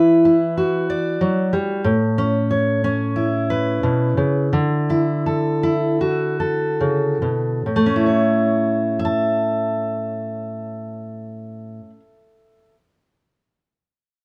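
Folk excerpt in A major, nostalgic and pastoral, with a fingerpicked steel-string acoustic guitar, full-bodied and up front, playing accompaniment across the whole 12.7 seconds, moving from Emadd9 through A and Dadd9 back to A at 7.7 seconds, its tempo of 67-94 BPM slowing between 1.8 and 7.7 seconds, all set in a moderate studio reverb.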